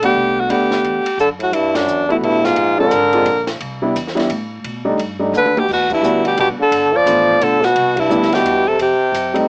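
A swinging waltz at 174 BPM in 3/4, with lilting eighth notes, sets this short jazz excerpt from a longer small-group swing and bop piece in G major, tuned a little flat of concert pitch. A compact cocktail drum kit keeps time with dark cymbals, a high-tuned snare and a tight kick, and plays a brief fill at 5.3 seconds, while a woody, growly upright bass plays low in the mix with plucked steel strings. A warm concert grand piano comps through lush extended harmonies such as Gmaj9, Bb9, B7alt and Em9, its deep bass and audible action noise giving it an intimate, natural feel. Up front, a bright alto saxophone carries the melody, and from 1.2 seconds a punchy, forceful trombone adds a distant, roomy second line with light vibrato. The whole band hits accents together at 1.7 seconds and again later, and the sax, piano and trombone all carry the coloring of cassette tape. The mood is warm and swinging, heard as if through a small speaker in a home recording with a touch of reverb.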